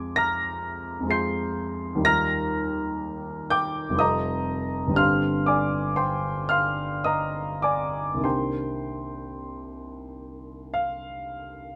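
Impressionist classical solo piano in C minor and 3/4, hazy and wistful at a rubato 47-64 BPM, this short excerpt features a warm, present grand piano placed up front with long sustain and light reverb, spanning F1 to D7 as it drifts from Fm6 through Ebadd9, F9 and G7sus4 before settling on Cm9 at 8.2 seconds.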